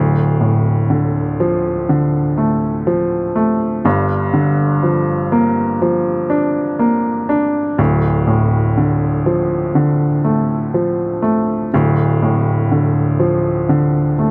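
In a straight, unhurried 4/4, this melancholic pop fragment, cut from a longer piece, features a solo baby grand piano that sounds clear, polished and up front, ranging from D1 to D4. Across its 14.3 seconds the harmony moves from Dm to Gm7 at 3.9 seconds and back to Dm at 7.8 seconds, carrying an emotional mood. The sound is that of a dry, close 1970s-style studio recording touched with light reverb.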